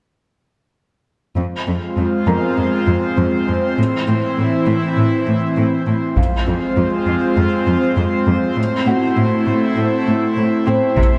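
A relentless, tense hybrid orchestral and electronic film score cue, cut from a longer piece, where an airy, breathy pad with chorus sustains chords over a lush, bowed cello section carrying the bass, a felt-muted upright piano with audible action noise adds delayed, intimate texture from 2.3 seconds, and an up-front taiko ensemble struck with hard sticks bursts in at 6.2 seconds, all set in a concert hall reverb as the harmony shifts between Fm and Am.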